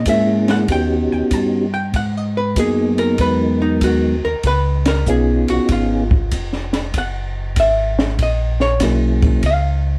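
A clean, picked hollow-body archtop guitar and a round, mellow tonewheel organ bass line open this swinging, soulful soul jazz organ trio cut from a longer piece, moving at 96 BPM in 4/4 with a swung eighth-note feel. The guitar, electric and dark in tone, carries a solo across the whole passage. The bass organ sits up front with audible key click and a slow rotary speaker. From 0.1 seconds a soft, flute-like percussive organ takes the melody, its second-harmonic percussion colored by chorus vibrato and slow rotary. A compact acoustic cocktail kit plays hi-hat, ride, a punchy kick and a high-tuned snare with a smooth, rolled-off top. The harmony runs from A#m7b5 and D#7alt through G#m7, C#7 and F#7 before settling on C#, all heard from further back in a small room with moderate reverb.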